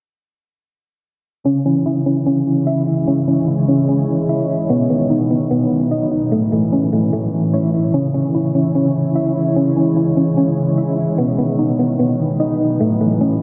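A half-time hip hop groove in 4/4 drives this hard-hitting, brooding excerpt, where a dark, clean, fingered electric guitar with tremolo and a woody, round mallet-like synth pluck playing chorused, tape-echoed arpeggios both enter at 1.5 seconds, joined at 2.6 seconds by a cloudy, evolving granular pad holding sustained chords, the whole dreamy mix soaked in a huge ambient reverb as a filter sweep runs to 13.4 seconds over a C#m, B, A progression.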